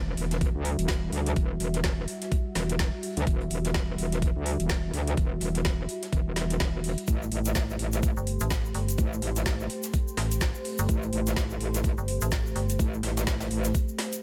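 Aggressive and swaggering, this bass house cut runs at 126 BPM in E minor with a 16th-note swing, moving from Emadd9 to Am7 at 7.1 seconds. A metallic wobble bass dominates up front, its FM tone saturated, compressed and thickened with chorus as it pumps against a knocking, overdriven electronic kick. Beneath them, a dark analog pad holds deep, detuned sawtooth chords with a sub octave and slow attack, ducking with the same sidechain pulse. The drums layer an overdriven garage kit with a woody snare and metallic hats over a very quiet acoustic brush kit, while a very quiet electronic impact opens the excerpt. A grainy, close egg shaker joins at 7.1 seconds, and a second, mellower metallic FM bass with a decaying digital tone enters at 8.2 seconds, all set in a studio reverb.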